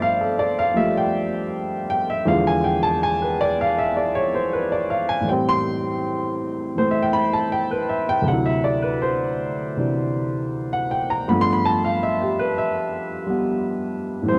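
A woody upright piano opens on a G9 chord and plays alone through the whole 14.4-second fragment, a relaxed, playful solo jazz passage with a lilting swing feel in 4/4, tuned to A4 = 435 Hz. The piano sits up front with a polished, present tone and long sustain, ranging from D2 to C6 as it moves through E7b9, Am7 and D9 before returning to G9 at 11.3 seconds. The sound is dry and close, in the manner of a 1970s studio, with just a touch of small-room ambience.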